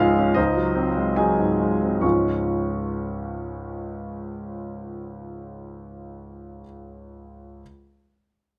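Brilliant and heroic in character, this brief excerpt from a virtuoso classical piano study moves at 71 BPM in 2/4, its rubato feel stretching the pulse in D-flat major. A clear grand piano plays solo from 0.0 to 7.6 seconds, ranging from Db2 up to Db6, its polished, present tone sitting up front with long sustain. The opening passage slows down over its first 2.0 seconds, built on an Ab7 chord over a Db bass that arrives at 0.4 seconds. At 2.0 seconds the music settles onto a D-flat major chord as a new section begins, running to 5.4 seconds. Close, detailed microphones capture the instrument in a light reverb, giving the sound an intimate, finely drawn quality.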